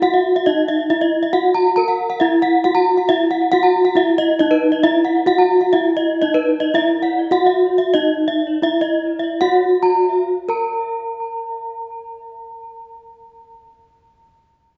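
A bronze gamelan-type metallophone struck with a wooden mallet carries the melody up front, its metallic, ringing tones giving this hypnotic gamelan excerpt a brilliant glow in straight 4/4. A second bronze metallophone, played with a horn mallet, sits just above it with bright arpeggios colored by tape echo. Both instruments use paired tuning, so every note shimmers with beating overtones. The pulse slows from 5.3 seconds, and a new section begins at 10.3 seconds, in an excerpt cut from a longer piece. A wet recital-hall reverb surrounds the pair, and the highest treble is gently cut away.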